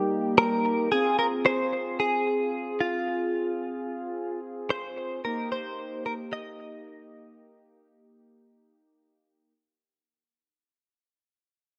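A straight, driving 4/4 pulse carries this short pop fragment, cut from a longer piece, its melancholic mood shaped by a move from Eb to F minor and back to Eb. Up front, a bright, clean electric guitar, recorded direct and compressed, picks out the melody in a middle register, colored by analog chorus and analog delay. Beneath it, a mellow synth brass part supplies the accompaniment with a round, sawtooth tone, soft attacks and sustained notes, plus its own chorus and a filter sweep. A moderate plate reverb and plenty of echo give the mix a spacious, trailing sound. Nearly the whole passage is a fade-out from 0.9 seconds, with the guitar stopping at 9.0 seconds and the brass holding on until 9.5 seconds.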